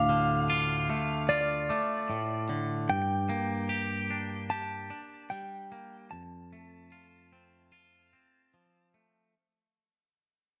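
A brooding, cathartic rock passage opens with an up-front, twangy electric guitar picking compressed arpeggios, a clean lap steel guitar carrying a sliding melody, and a glockenspiel struck with rubber mallets adding mellow, airy, bell-like arpeggios until 2.5 seconds. Each part carries a slapback echo as the harmony moves from Dm to Gm to F, and the passage fades throughout, with the lap steel dropping out at 8.9 seconds. A moderate concert hall reverb gives the dark, warm production a spacious ring.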